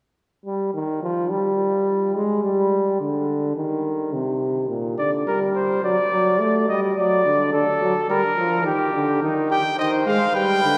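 The brilliant trumpet carries the melody, entering at 9.5 seconds high in its range, close-miked and up front, just as this excerpt from a longer classical brass canzona breaks off. The piece is an imitative work in C minor at 106 BPM in a straight 4/4, with a driving yet solemn mood. A clear, distant trombone opens at 0.5 seconds with the accompaniment in a low register, its tone roomy in the space. At 5.0 seconds a mellow trumpet joins with the second line, played with a soft attack and light vibrato. The harmony moves from an unaccompanied opening through G minor, D and back toward C minor, all set in the long, wet reverb of a cathedral-like hall.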